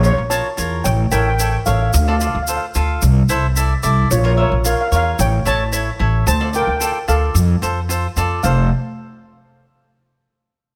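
A straight 4/4 calypso groove drives this sunny, festive fragment of a longer piece, with a shimmering, metallic double-seconds steel pan played with medium rubber sticks in a boxy small room carrying the melody over crisp, picked cavaquinho accompaniment, a thumpy, woody gut-string upright bass plucked pizzicato up front, and a grainy, mellow tube shaker kept close and dry, all four parts stopping at 8.7 seconds just after a new section begins at 8.4 seconds.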